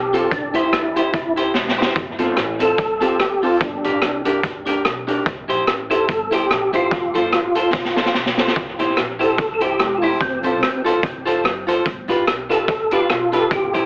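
A percussive tonewheel organ carries the melody in this upbeat, joyful ska passage, its round, dark tone marked by key click and third-harmonic percussion, spun through a fast rotary speaker with chorus vibrato and trailed by dub echo. Underneath, a raw garage drum kit sits up front with a punchy kick, high-tuned snare, rim clicks and hi-hat, sounding saturated and gritty with a rolled-off top and its own dub echo, and it breaks into fills at 1.5 and 7.7 seconds. A twangy, bright electric guitar plays picked accompaniment while a boxy upright piano, woody and intimate with audible action noise, adds stabs from the background, and a thumpy pizzicato upright bass anchors the low end. At 8.6 seconds a grainy cabasa enters, barely audible. Moving at 146 BPM in 4/4 with a light swing in F major, the chords cycle through C, F, G minor and G7, and the whole mix is wrapped in wet studio reverb and a heavily compressed, AM radio character, cut from a longer piece.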